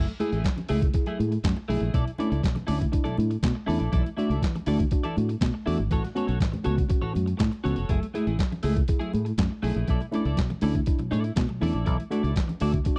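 A clean, picked electric guitar with a shimmer of analog chorus and a worn, slightly out-of-tune tine electric piano open this driving, glamorous disco excerpt in F# minor, joined at once by a punchy fingered electric bass sitting up front. Within moments a sampler-style drum kit arrives, pitched down and gritty with a thumpy kick, medium-tuned snare, hi-hat and handclaps, followed by bright, thin-skinned congas tucked very quietly into the mix. The groove moves at 121 BPM in a straight 4/4, cycling through lush extended chords such as F#m9, Bm11, E7sus4/B and A6. Bass and drums carry the most weight, the kit compressed and tape-tinged, while guitar and electric piano hold back as accompaniment. The whole track has a dry, close 1970s-style studio sound with little reverb, and it runs about 13 seconds as a section cut from a longer piece.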